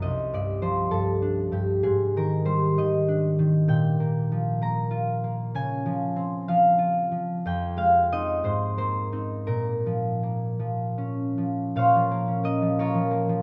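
A ringing, up-front concert harp carries this mysterious, wistful classical solo in a rubato 6/8 at about 50-66 BPM, its fingerpicked lines spanning C2 to Bb5 and settling into Bb minor from 3.7 s, drifting through rich chords like Dbmaj7 and Fm9 before a brief new section at 11.8 s, all bathed in a wet recital-hall reverb in this short cut from a longer piece.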